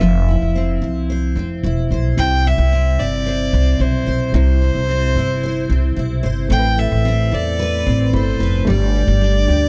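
A thumpy, woody upright bass sits up front in this short acoustic pop excerpt, plucked low beneath a heartfelt, carefree mood at a straight 111 BPM in 4/4 and C major. A dark, single bowed fiddle carries the melody with light vibrato, set in plate reverb and tape echo. A double-tracked, full-bodied dreadnought steel-string guitar is picked underneath, also bathed in plate reverb. At 2.2 seconds a gritty, barky overdriven reed electric piano joins in the background through a combo amp, with tremolo and plate reverb. The harmony moves from an opening F5 to C, then to Amadd9 at 6.5 seconds and Gsus2 at 8.7 seconds, all within a dark, warm production with light reverb.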